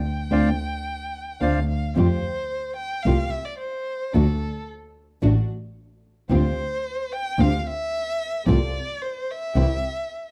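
A rich, distant bowed violin opens this passionate, dramatic rubato tango in F major at 111 BPM, joined at 0.3 seconds by a bright, reedy bandoneon melody that ends by 1.6 seconds, fingerpicked acoustic flamenco guitar, soft-attack sul tasto string stabs in the background and an up-front bowed double bass with expressive portamento, before the violin takes a solo from 2.0 seconds over chords moving from Dm7 to C, all captured in a dry, close 1970s-style studio sound.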